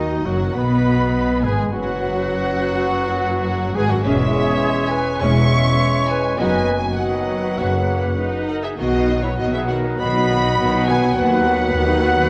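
A rubato 4/4 pulse around 102 BPM carries this cheerful, graceful classical passage in B major, cut from a longer piece, where lush bowed violins with vibrato sing the melody over a quieter, woody violin line, a hollow, distant flute second line, and close, focused violas in accompaniment. Dark French horns and vintage-toned trombones hold sustained chords in the background while a solo trumpet adds stabs, and clear cellos with rich, even double basses anchor the bass. The whole orchestra sits in a wet scoring-stage reverb and carries the worn, warbling pitch drift of old cassette tape, moving through chords from B to C#m/E and F# before settling on B/D# at 11.2 seconds.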